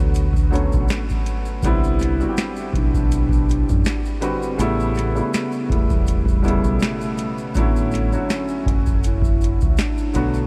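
Melancholic and hazy, this lo-fi hip hop excerpt sways at 81 BPM in 4/4 with a light swing, its woody upright piano, filtered and cassette-tinged, sitting up front over a round, dark fingered dub bass while a booming analog drum machine supplies a deep kick, tonal snare and metallic hats, with a grainy tube shaker tucked in the background. After a short opening break, a warbling, detuned lead with chorus and vibrato enters at 1.7 seconds, carrying a mellow, nostalgic melody as the chords move from Bm7 through Cmaj9 and A9 to Dmaj9. Light reverb and a cassette tape finish give the whole recording a soft, dusty ambience.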